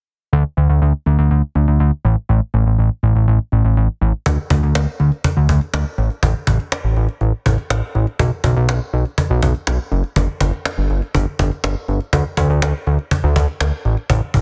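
A straight 4/4 pulse at 122 BPM drives this short synth-pop fragment, cut from a longer piece, with a mood that feels upbeat yet wistful. A fat analog bass opens alone at 0.3 s, sitting up front and low between F#1 and D2, its detuned sawtooth and square-wave tones saturated and thick. Its fast attack and filter pluck give each note a defined start before it sustains into a mellow body, while a moving notch adds motion to the tone. At 4.3 s a cajon joins, placed up front with hard hands drawing a woody, acoustic sound and faint snares, set in a small room. Both parts carry through to 14.4 s under a dense, heavily limited modern master.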